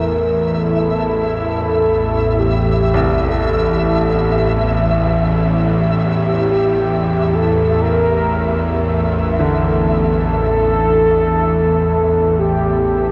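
Dark ambient drone in free time, centred on A phrygian, this cavernous, shadowy passage is cut from a longer piece and bathed in a huge, wet reverb that gives the whole production a dark, warm depth. Up front, a bowed-like drone sits low in the register, string-like, tense and nasal, with a slow attack, vibrato and a noise layer woven into its sustained tone. Above it, a mellow horn-like synth lead carries the melody between G4 and Bb4, its round, warbling, vintage voice softened by chorus and a diffuse ambient delay. A very quiet sweeping resonant pad holds evolving, detuned chords with a bright filter swell, while a flickering grainy texture hovers high on E5, granular and sustained in its own reverb. At 2.9 seconds a clear, polished baby grand piano enters in the background with low arpeggios, its notes trailing into a diffuse delay through to the end at 13.1 seconds.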